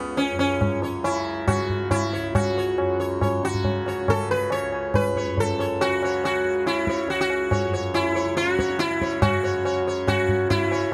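A straight 4/4 pulse at 139 BPM carries this solemn, introspective Hindustani classical excerpt in raga malkauns on C#, with low-tuned, ringing tabla entering at 0.2 s, close and dry beneath a mellow tanpura drone that shimmers softly underneath. Up front, the bright, buzzing sitar carries the melody between B3 and C#5, its sympathetic strings adding a glittering halo and a touch of tape echo trailing its plucked notes. Close, detailed microphones and light reverb keep the sound intimate, and the music moves into a new section at 9.2 s before the cut at 10.9 s.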